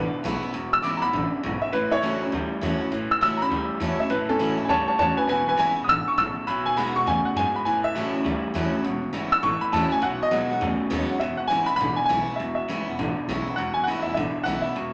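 A woody, up-front upright piano takes a rollicking solo from the start until 11.2 s over bright, full-bodied picked steel-string acoustic guitar, a twangy, slightly broken-up lo-fi electric guitar riff and a dark, thumpy pizzicato upright bass, in this rowdy, swung rockabilly excerpt at 202 BPM in E mixolydian, set in a large, wet studio reverb.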